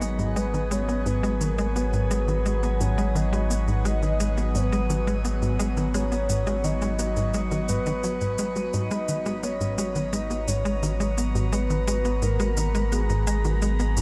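A tight, punchy sequencer bass riff drives a straight 4/4 pulse at 86 BPM, its sawtooth and square-wave tone given a ring-modulated edge, a filter pluck and echoing delay, while electronic shaker and bongos, re-recorded in a large room and also treated with delay, sit low in the mix. Beneath it, a round analog bass holds a deep, nasal G#1 with a firm, up-front presence. An evolving wavetable pad sustains dark, detuned chords that morph and warble through a phaser and its own reverb, giving the piece a vintage haze. On top, a soft, octave-layered synth lead sings a melody between G#4 and D#5, its full triangle-and-sine tone carried by a sub octave, chorus, vibrato and delay. The mood is cosmic and expansive, resting on a single G#m7 chord in G# minor across this 14-second section from a longer piece of ambient, sequencer-driven space music, all bathed in a moderate shimmer reverb with a 6.6-second decay.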